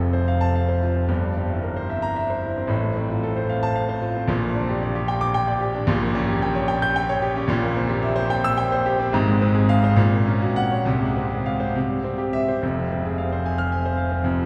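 Classical virtuoso piano study, stormy and agitated, cut from a longer piece: a solo grand piano with a clear, intimate, up-front tone and audible action noise unfolds in a rubato 6/8 at 74 BPM across a range from F1 to G6, turning from F major to F minor at 5.9 s and reaching a new section at 12.6 s, all set in a 7.0-second cathedral reverb heard from further back in the room.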